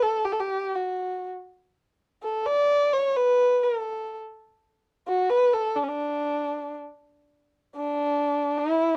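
Warm and passionate, this brief Persian fragment, cut from a longer piece, moves in a straight 6/8 in the mahur mode, carried entirely by a single solo kamancheh. The bowed instrument sits close and up front, its dark, woody tone shaped by a soft attack, light vibrato and gliding portamento, ranging from C#4 to D5. A light reverb and a dark, warm production frame the line, which turns toward a new phrase at 7.3 seconds before the fragment ends at 9.0 seconds.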